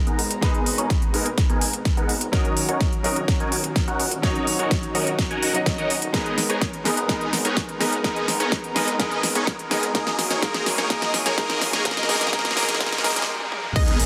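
A huge, euphoric supersaw lead, bright and up front with phaser, a low-pass filter sweep, sidechain pumping and dub echo, carries the riff through this anthemic, emotional 126 BPM festival progressive house build-up in G# minor, set over a worn grand piano in the background with its own pumping and echo, a very quiet airy unison pad, a thick detuned saw bass, a punchy electronic kick and a pop drum kit with a fat, clipped snare, crisp hats and fills, while a faint riser and sub drop arrive at 11.7 s, a stop at 13.3 s gives way to an impact at 13.8 s, and a lush unison pluck sounds a brief arpeggio.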